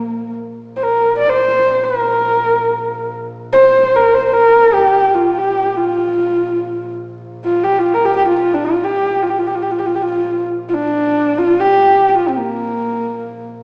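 Unfolding in free time, this short cut from a longer piece of traditional Mongolian folk music carries a galloping, proud spirit. A single bowed horsehead fiddle leads the melody from the start to 13.5 seconds, sitting up front with a nasal, husky, boxy voice drawn from its horsehair strings, colored by vibrato and sliding portamento between notes. Beneath it, one bowed double bass holds a low drone from the opening to 13.6 seconds, far quieter than the fiddle, its woody tone shaded with its own vibrato. Both instruments share a dark character. The sound is bathed in a generous, wet reverb suggesting a church or concert hall, though the overall playback has the quality of a small speaker.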